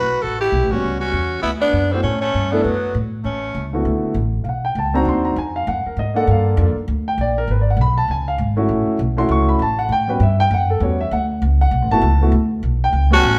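Small-group swing and bop jazz at 198 BPM in D major, sophisticated and swinging, opens with a growling, raspy tenor saxophone on the melody and a punchy trumpet on a second line, both falling away at 3.7 seconds and briefly returning at 13.1 seconds, while a woody pizzicato upright bass plays throughout and a dark, mellow grand piano accompanies from 0.7 seconds, the band heard playing live together in a wet stone-room reverb.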